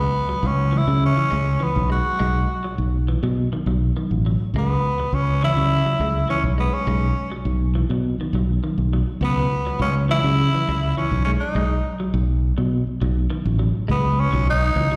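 A straight 4/4 afrobeat groove at 102 BPM in C# minor, this funky, hypnotic clip, cut from a longer piece, rides a dark, round fingered electric bass up front, while a raspy, gritty tenor saxophone carries a punchy solo melody with vibrato and slapback echo over clean, picked arpeggios from a semi-hollow electric guitar touched with subtle chorus and its own slapback echo, captured as a live gig through the venue's PA in recital-hall reverb, the C#m7 and B vamp giving way to a C#9sus4 at 13.9 seconds.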